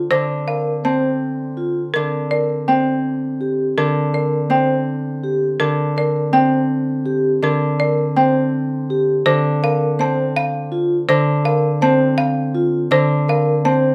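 Classical minimalist pattern music in Bb major drives along at 164 BPM in a straight 5/4, its propulsive, hypnotic cycle moving from Bb to G minor at 1.9 seconds and back to Bb at 9.3 seconds. An up-front, fingerpicked Celtic harp rings warmly in the low register as accompaniment. A folk marimba struck with hard mallets carries the melody in a woody, dry, rustic tone, while a mellow, airy vibraphone with soft mallets and a medium motor vibrato spins arpeggios from 0.5 seconds, all set in a moderate large-studio reverb.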